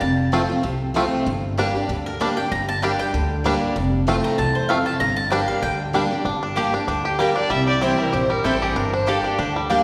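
A bright, full-bodied picked steel-string acoustic guitar, a round double-strung mandolin taking a solo of stabs through the first 6.3 seconds, and a woody, thumpy upright bass open this lonesome, rustic bluegrass excerpt in G dorian at a swung 192 BPM, joined at 0.3 seconds by twangy fingerpicked banjo arpeggios, while a distant, dark fiddle with light vibrato carries the melody from 7.1 seconds as chords move from F and Gm to C, all set in the reverberant wash of a church or concert hall.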